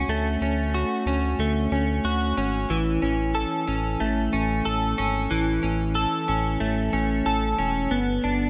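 Floating and dreamy, this short dream pop excerpt in A major moves at a straight 92 BPM in 4/4, tuned slightly flat to A4 = 438 Hz, with the harmony drifting from Dmaj7 to A at 2.7 seconds and to G at 7.9 seconds. A clean, compressed electric guitar sits up front playing picked arpeggios, colored by analog chorus and digital delay. Beneath it, a round, dark analog bass with a fast attack and a sustained tone holds down the low end, and both parts play throughout inside a moderate plate reverb with a long 3.7-second tail.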